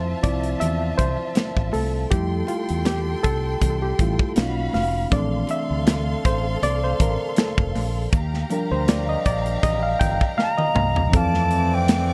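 A lightly swung 80 BPM groove in 4/4 from a tight, small-room acoustic drum kit with vintage sampler grit, a punchy fingered electric bass and very quiet, ringing high-tuned congas carries this lush 1970s-style soul fragment in F major, where a bright, barky, lightly overdriven reed electric piano solos over soft-attack bowed violins and ninth chords until a drum fill at 10.4 s brings in a pure, straight-toned concert flute melody and, at 11.1 s, a warm jazz-style horn section adds stabs in the background on an Fmaj7.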